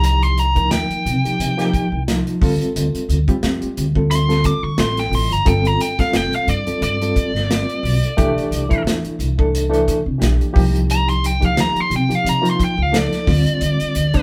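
A dark, overdriven lead guitar solos from the first moment to the end of this slick, funky electric jazz fusion cut, riding a lightly swung groove up front in the mix. Beneath it, a reedy, slightly out-of-tune electric piano with fast tremolo comps through chords moving from F9sus4/C to Dm7, Gm7 and Cadd9, while a woody pizzicato upright bass and a punchy acoustic drum kit with a medium-tuned snare hold the pocket. The band plays live together in a small, wet room, and the drums carry a pumping room sound.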